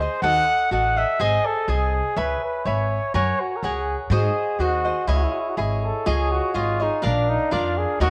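A mellow trumpet with light vibrato and tape echo carries the melody in a classical style, leading this festive, romantic mariachi excerpt in C# harmonic minor at 124 BPM in 2/4. Crisp picked cavaquinho and a woody pizzicato upright bass with steel strings sit up front beside it, moving through chords such as C#m7, G#7 and C#madd9 before shifting to a new section at 6.1 seconds. An echo-chamber reverb gives the whole a moderate studio space.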